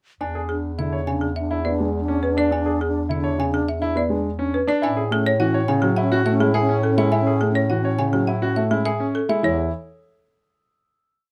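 Classical minimalist pattern music at 104 BPM in a straight 4/4, propulsive and bright, in which a woody, dry folk marimba struck with hard mallets carries the repeated short-cell melody. It runs over repeated short cells from a clear, open grand piano with long sustain and a dark baby grand entering at 0.8 s. An airy alto flute adds a second line of tongued, vibrato-tinged pulsing notes that swell and fade, and a warm, up-front bass clarinet holds long bass notes as the harmony moves from E7 to A6 at 4.8 s, all captured by close, detailed microphones with little reverb.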